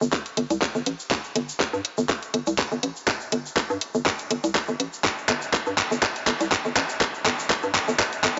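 Cool and quirky, this short cut from a longer minimal techno track runs at 122 BPM in 4/4 with a light 54% swing on the sixteenths, the whole stretch working as a build-up carried by a drum fill. A hollow, knocking FM bass sits up front between G1 and G2, its bouncy, punchy notes striking fast and decaying while sidechain pumping and a high-pass filter shape its pulse. A tight, layered electronic kick, also high-passed and given studio reverb, anchors the beat from 0.1 seconds. Next to it a produced garage drum kit brings handclaps and bright hi-hats well forward, with its own studio reverb. In the background a grainy acoustic egg shaker adds a live-room texture, while the mix is dreamy and soaked in a 2.0-second digital plate reverb, its top end rolled off above 7.6 kHz.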